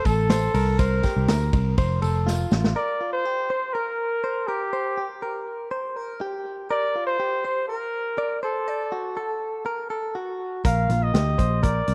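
Restless and wistful, this short cut from a longer jangly indie pop piece moves in a straight 4/4 with a dry, close 1970s-style studio sound. A clear, punchy flugelhorn carries the melody up front throughout, its vibrato lending a vintage pop flavour. A bright, twangy clean electric guitar, recorded direct and compressed, plays picked arpeggios beneath it with a touch of spring reverb. For the opening 2.8 seconds, a dark, round, foam-muted bass and a punchy vintage drum kit with dark cymbals and a rolled-off top join in, along with a jingly tambourine in the background, and the drums close that stretch with a fill. The horn and guitar then continue through chords like Bbsus2, Gmadd11 and Bbadd9 before bass and drums return at 10.6 seconds.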